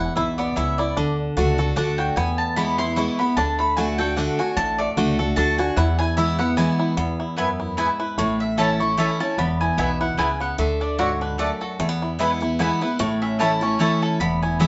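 A full-bodied, bright steel-string acoustic guitar sits up front in this lively, joyful bluegrass passage in three, picking the accompaniment with a lightly swung feel. A twangy, percussive banjo plays the melody throughout, while a warm, double-strung mandolin adds picked stabs and takes a solo turn during the first 7.0 seconds. At 7.8 seconds a second, more brilliant mandolin joins with its own woody melody line. Underneath, a thumpy upright bass with gut strings gives a dark, pizzicato foundation, and the harmony moves mainly among E, D and A. The band sounds as if it is playing live together in one room, with moderate studio reverb and a softened top end, and the passage is cut from a longer piece.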